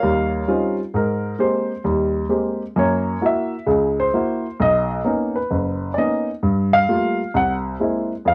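A dark, mellow baby grand piano carries this short solo jazz fragment on its own, sitting up front with an intimate closeness where the audible action noise of the keys comes through. It swings at 131 BPM in 4/4, with a relaxed triplet lilt on the eighth notes that gives the music an easy, warm mood. The playing spans the keyboard from F#1 up to Gb5, and the natural tone has a short sustain. Beginning on Eb13, the harmony moves through Abmaj9, Gb7, Bmaj9 and Gm9 before landing on a Caug7 at 7.3 seconds, cut from a longer piece. Light reverb and the soft grain of a home cassette recording, tuned to A4 = 441 Hz, frame the piano in a cosy, lived-in sound.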